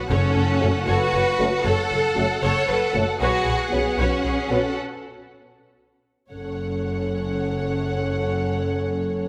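A straight 6/8 pulse at 77 BPM carries this dark, epic orchestral film-score passage in F# minor, where a lush, expressive violin section holds the melody over a smooth, close second violin line, background violas, clear yet distant cellos and rich, up-front double basses, while a hard-mallet timpani stroke sounds at 0.1 s, mellow French horns sustain chords from 0.6 s, and a very quiet, shadowy trombone section holds low chords until 4.6 s, all moving from F#m to Bsus2 and back inside a moderate scoring-stage reverb.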